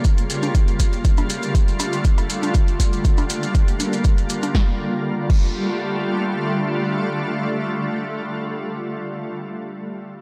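A shimmering, ethereal pad of detuned, octave-up shimmer opens this uplifting, expansive progressive house fragment, alongside an up-front, overdriven deep kick, a layered drum kit with punchy snare, hi-hat and crash, and grainy, mellow maracas in the background. Overdriven analog congas and cowbell join at 0.4 seconds. The pad's sustained, chorused chords carry reverb and sidechain pumping as they move through Bbm6, F69 and Gm7 before settling back on F69, and once the drums stop at 5.5 seconds the bright pad rings alone until 9.3 seconds in a dark, lightly reverberant mix.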